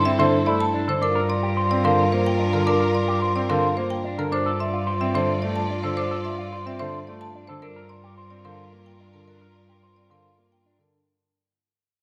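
A dark, distant clarinet, a rich bowed violin section holding sustained chords, an envelope-filtered electric guitar picking twangy arpeggios and a clear, up-front cello on a low G all begin together in this urgent yet meditative minimalist classical pattern piece, moving in a straight 3/4 at 109 BPM in G dorian. Moments later a close-miked, woody marimba with hard mallets takes the melody, a present grand piano adds accompaniment, and a delicate, bell-like celesta rings arpeggios in the background over harmony centred on Gm7. A scoring-stage reverb gives the blend a roomy glow, and the whole passage fades out across its roughly 11 seconds, cut from a longer piece.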